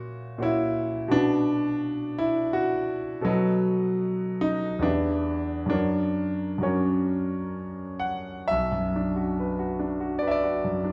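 A clear, up-front concert grand piano with deep bass and a smooth, vintage tone sounds through a wet recital-hall reverb in this wistful, yearning romantic nocturne in B minor, played solo in a rubato 3/4 at 64-88 BPM across a range from B1 to F#5, its harmony moving from F#7/A# through Bm, B7, Em and F# before a new section returns to Bm at 8.5 seconds in this short cut from a longer piece.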